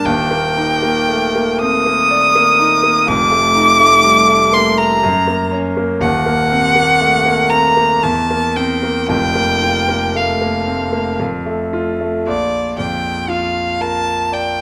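A tender, lyrical romantic classical duo in Bb major, cut from a longer piece, unfolds in a slow, rubato 3/4 at 56-62 BPM, as a rich, smoothly bowed violin played by one player with vibrato carries the melody up front over a bright concert grand piano accompaniment whose brilliant tone, deep bass and long sustain fill a moderate recital hall reverb, the harmony drifting from Ebmaj7 through F9, Gb and C7/E before arriving on Bb at 12.3 s.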